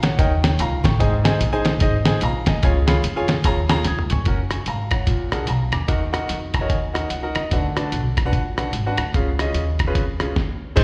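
A swung eighth-note groove in 4/4 drives this hopeful, reverent uptempo gospel passage, cut from a longer piece and heard as a live gig through a venue's PA with recital-hall reverb. Up front, a muffled, compressed sampler-style kit with a thumpy kick and fat snare backs a clear, intimate baby grand piano whose action noise is audible and whose playing carries a slapback echo, while a woody pizzicato upright bass on steel strings anchors the low end. A drum fill at 3.9 seconds leads into the second section, and the piano takes its own fill at 6.3 seconds.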